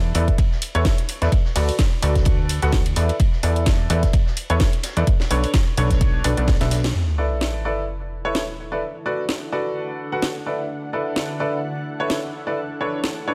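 Piano house at 128 BPM with a swung 16th-note feel and an uplifting, euphoric mood, this clip from a longer piece is built on a clear, slightly worn grand piano riff that pumps against the beat through tape echo and a low-pass filter, cycling through E7sus4, D6 and Bm9 chords. A punchy, funky analog bass with a plucky sawtooth bite and tube saturation sits up front beside a punchy electronic kick, a layered house kit with a cracking snare, and a high-tuned acoustic street-band kit in the background. After a drum fill and band accent, the bass and kick fall away as a sub drop hits at 6.9 s, and from 8.1 s a blurred, evolving granular cloud pad with its own reverb drifts in beneath the piano and house kit, all in a small-room ambience.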